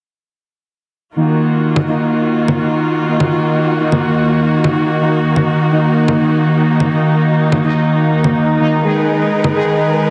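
Bold, wave-folded analog synth brass stabs with chorus and delay lead this dark, melancholic melodic techno excerpt at 125 BPM in Eb minor, set over clear, bowed string-section chords with vibrato, layered electronic congas entering at 1.8 seconds, and a detuned, warbling analog drone in the background, bathed in lush hall reverb and a heavily compressed radio sound as the Ebm harmony shifts to Abmadd9/Eb at 8.8 seconds.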